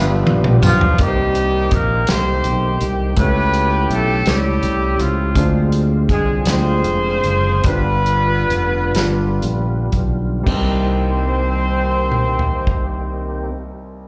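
Solemn and fervent, this slow gospel passage in 6/8 and C minor, cut from a longer piece and heard live through a club PA with small-room reverb, moves at a dotted-quarter pulse of 36-55 BPM as a mellow, octave-doubled horn section with light vibrato carries the melody up front with slapback echo, a warm concert grand with deep bass sits in the background, a full, lightly overdriven tonewheel organ with percussive second-harmonic attack, chorus vibrato and a slow rotary speaker holds sustained chords, a punchy fingered electric bass holds down the low end while a tight, dark-cymbaled country drum kit opens with a fill, a jingly tambourine flickers briefly at 0.6 s, and the band slows down from 5.4 s before reaching a new section at 10.5 s.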